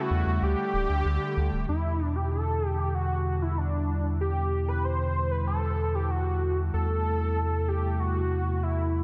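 Driving and nocturnal, this synthwave excerpt moves at 95 BPM in a straight 4/4 in E minor, cut from a longer piece. A thick, nasal unison lead built from detuned sawtooth voices carries the melody up front, its sustained tone colored by vibrato, lush chorus and tape echo. Beneath it, a shimmering, retro pulse-width pad holds sustained chords with a slow attack, and from 1.7 seconds a filter sweep runs across it as the harmony settles from Dsus4 onto Em7, later shifting to Am7/E at 6.7 seconds. A deep, round analog bass with a fast attack enters at 0.1 seconds and sits prominently in the low end. The parts share a lush hall reverb with a long tail, and the dense, heavily limited modern master keeps the sound full and forward.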